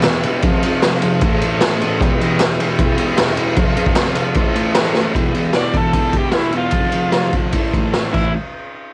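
A straight 4/4 beat at 152 BPM drives this menacing, gritty garage rock excerpt in A minor. A raw drum kit with a boomy kick and high-tuned snare sits up front beside a thick, double-tracked fuzz guitar riff, while buzzy combo organ chords, heavy with vibrato, hover in the background and hollow, distant group handclaps sit very quietly underneath until 4.8 seconds. After a drum fill at 5.0 seconds, an overdriven slide guitar carries the melody over the F, Am and Em changes, and the organ adds a fill near the close, all captured on a home cassette recording with light reverb.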